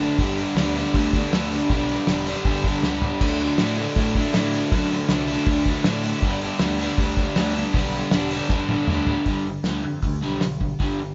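A straight 4/4 at 159 BPM in G major powers this raw, rowdy garage rock excerpt, where an up-front, double-tracked crunchy overdriven guitar riff moves through G and D over a growling, overdriven picked electric bass and a cloth-damped, thuddy drum kit with a fat snare, tight kick and dark cymbals, with drum fills at 2.8 and 8.5 seconds and a new section arriving at 9.3 seconds, all captured as a band playing live in one room with light reverb and a rolled-off, dusky top.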